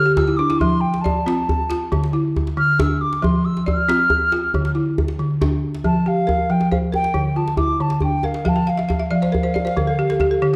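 West African traditional music in a straight 12/8, hypnotic and flowing, with a mellow wooden flute carrying a pure, expressive melody with vibrato and a soft attack, soloing through the first half over buzzing, woody balafon arpeggios struck with hard rubber mallets. A tight, cracking djembe enters at 0.2 seconds, and the balafon adds fills at the very start and again from 8.5 seconds as the chords move between F and D minor before settling on an Fmaj7sus2. The sound is dark and cushioned by a reverberant recital-hall ambience, and the passage is cut from a longer piece.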